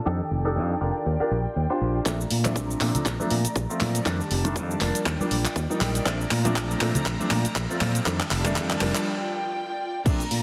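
A swung 120 BPM 4/4 groove in Bb major drives this feel-good, sunny slice of filtered disco house, as a growly, up-front fingered electric bass with tube saturation and a brilliant baby grand piano, its action noise audible and run through a phaser, pump under sidechain and a low-pass filter over dark, sul tasto chamber strings holding soft-attack chords. At 2.1 s a punchy, tape-warm electronic kick and a layered house kit of crash, handclaps, hi-hat and shaker arrive, joined by very quiet, ringing tube shaker and congas, for a build-up with a drum fill and filter sweep through chords like F13, Ebmaj9 and Bbmaj7. A break lands at 9.1 s on Dmadd11/F, and the whole mix carries an echo chamber reverb and a heavily compressed radio sound.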